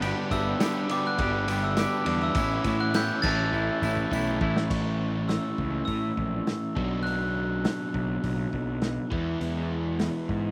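A straight 4/4 pulse at 102 BPM drives this carefree, wistful indie rock fragment, cut from a longer piece and set in A mixolydian before settling into A major at 4.7 seconds. A vintage drum kit, muffled and lo-fi with dark cymbals and a punchy kick, plays throughout and rolls into a fill from 3.5 seconds. Underneath, a fuzzy picked electric bass sits up front, while a bright, overdriven electric guitar with spring reverb carries the riff for the whole passage. A clean, twangy second guitar with slapback echo plays its own riff only until 4.7 seconds. Soft plastic mallets on a ringing, bell-like glockenspiel carry the melody, joined early on by a very quiet, crystalline FM synth bell with chorus and a distant, jingly tambourine. The chords move from G to Aadd9, then A, Bm and E, and the dry outdoor recording carries little reverb.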